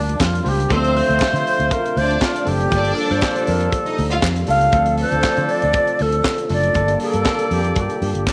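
A lossy, echo-chamber-tinged sound with a modest room sheen frames this glamorous, danceable disco passage, cut from a longer piece and built on alternating Gm9 and Dm7 chords. An airy, bright, unsteady alto flute with crisp attack and vibrato carries the melody over a dark, round fingered electric bass up front, a tight funk drum kit with a high-tuned snare, background handclaps, a bell-like tine electric piano, and distant horn stabs. A very quiet tonewheel organ holds sustained chords through a fast rotary speaker with key click, while a lush, bowed string section adds a second line from 0.7 to 4.2 seconds.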